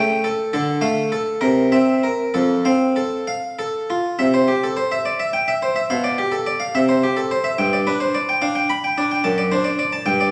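A wet recital-hall reverb, with a 1.4-second decay, surrounds a solo harpsichord placed up front in this short excerpt from a longer baroque-style suite movement. The instrument is a plucked, Flemish-style harpsichord on a single set of strings, and its tone is round and warm, ringing from F2 up to B5. The movement is dance-like in 6/8, moving at about 64 to 73 beats per minute counted in dotted quarters, with a rubato feel that keeps the pulse flexible. The mood is radiant, opening in F major over A7, D minor, C7 and F chords. At 4.2 seconds the music shifts to C major, passing through G7 over B, C and G before reaching D7 over F sharp at 9.2 seconds. The harpsichord plays alone throughout, sounding until 10.3 seconds.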